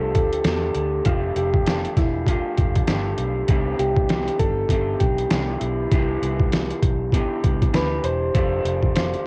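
Indie pop with a bedroom-pop feel, sunny and nostalgic, this short cut from a longer piece moves at 99 BPM in C major with a swung 16th-note groove, its chords shifting from F69 to Cmaj9 and back to F69 at 8.3 seconds. Soft, mellow electric-piano-like synth keys carry the melody with subtle chorus, analog delay and cassette tape color, while a dark, slightly broken-up electric guitar through a small old amp sits up front with lush chorus and vibrato, supported by a round, foam-muted fingered bass. Gritty, pitched-down trip hop sampler-style drums with a thumpy kick, medium-tuned snare and hi-hat are the loudest part, and the whole home cassette recording sits in light reverb.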